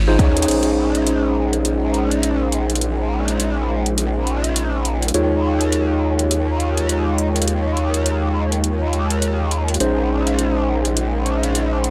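Glitch hop at 103 BPM in Bb minor with a swung sixteenth feel, this funky, gritty excerpt opens on a band accent, followed by a drum fill at 0.2 seconds, then moves from Bbm11 to Eb9sus4 and back while an aggressive, saturated growl bass with chorus sits up front beneath clean tine electric piano stabs carrying analog delay and sidechain pumping, a mellow sawtooth-and-triangle analog pad holds sustained chords with chorus and its own pumping, and an overdriven electronic pop drum kit adds metallic hats and crash cymbal, captured as a dry hardware recording with light reverb.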